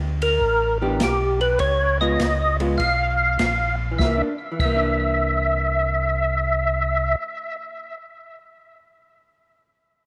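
Moderate plate reverb and studio ambience frame this greasy, soulful soul jazz organ trio fragment at 100 BPM with a swung feel in C mixolydian, where a mellow, round tonewheel organ carries the bass through a slow rotary speaker, a fat, percussive tonewheel organ with third harmonic percussion, chorus vibrato, key click and tape echo sings the melody up front, a small-room acoustic jazz kit with dark cymbals and a boomy kick plays until 4.8 seconds, and a clean, picked hollow-body electric guitar accompanies until 8.0 seconds over chords moving from a rootless Em7 through Db7 to C9.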